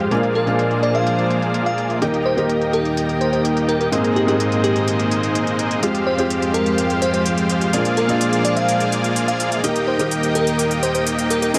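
Festival progressive house at 126 BPM in Eb major, this uplifting, euphoric excerpt is led by a huge, detuned supersaw riff, up front and heavily compressed, with a filter sweep and dub echo. A felt-muted upright piano adds soft, intimate accompaniment in the background, with audible action noise, while a rich studio string section holds floating bowed chords. Crisp electronic hi-hats enter at 0.1 s, and a sparkling, bell-like FM electric piano melody with chorus and dub echo begins at 0.4 s, all over a Bb7–Eb–Abadd9–Fmadd9 progression in light reverb.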